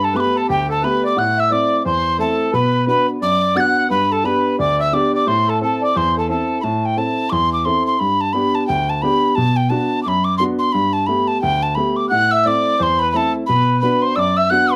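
Spirited and wild, this Celtic folk hornpipe in A dorian swings along at 175 BPM in 4/4, with a mellow, hollow wooden whistle carrying the airy, vibrato-touched melody up front over a clear, open baby grand piano whose long-sustaining accompaniment sits just as close. A reedy, vintage-toned accordion adds a second line with slow beating in its tone, dropping out at 6.6 seconds and returning at 12.1 seconds. The whole is set in a wet small room with a short reverb, and this brief cut is taken from a longer piece.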